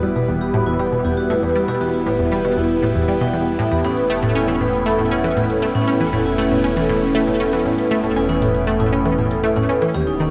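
Mysterious and hypnotic, this reverb-soaked excerpt of ambient, sequencer-driven space music pairs a swirling, phased analog pad and a bright, detuned analog pluck riff with echoing arpeggios from a dark, ringing vibraphone, while a fat analog bass fades in beneath a very quiet pulsing gated texture and overdriven electronic hi-hat and bongos join at 3.8 s as the harmony shifts from Em to Aadd9/E.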